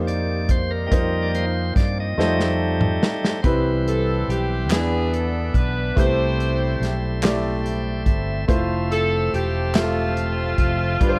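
A bright, shouting tonewheel organ, lightly overdriven through a stopped rotary speaker, carries a solo for the opening 3.4 seconds of this short slow gospel excerpt in 6/8 at 48 BPM, over woody upright piano, a round, punchy fingered electric bass, a very quiet dark French horn section and a soul drum kit with a punchy kick and rolled-off top that plays a fill just before the second section. At 3.9 seconds a clear, tight saxophone section with vibrato takes the melody, while crisp group handclaps sit in the background from 4.7 to 10.1 seconds and the organ adds a fill. The mood is uplifting and hopeful, moving from Ebmaj7 and F7 to Cmaj7, Am7 and Fmaj7 under light reverb.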